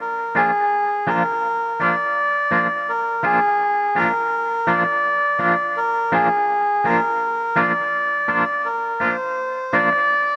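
Reggae with a sunny, laid-back mood, this short cut from a longer piece moves at 83 BPM in a straight 4/4, sitting in Bb mixolydian over a Bb chord and tuned to A4 = 436 Hz. A reedy, breathy melodica carries the melody from the start through 10.4 seconds, its nasal, band-limited tone giving it a vintage, plastic-cased character, with tape echo trailing its lines. Entering a moment later, a clean, picked electric guitar with a twangy edge plays accompaniment from 0.3 to 10.0 seconds, coloured by tremolo and its own tape echo. Both parts sit up front, with the melodica a touch louder than the guitar. Light reverb and a small room ambience surround the pair, and the rough home demo mix gives the recording an informal, unpolished feel.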